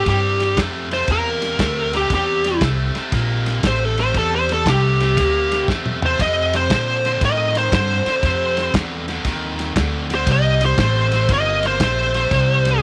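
An overdriven lead guitar leads this laid-back, gritty electric blues shuffle, playing a bright, picked solo up front for the whole excerpt. Beneath it, a second overdriven electric guitar plays a lower picked riff, while a pizzicato upright bass with a woody, dark tone holds down the bottom end. A soul drum kit with a tight kick, medium-tuned snare, toms and a shadowy ride cymbal carries a relaxed, mid-forward swing, its top end rolled off. The drums play a short fill between 5.7 and 6.2 seconds, as the harmony moves from C7 to F7, before returning to C7 near 10.3 seconds. A small room ambience surrounds the band, lending the cut from a longer piece an intimate closeness.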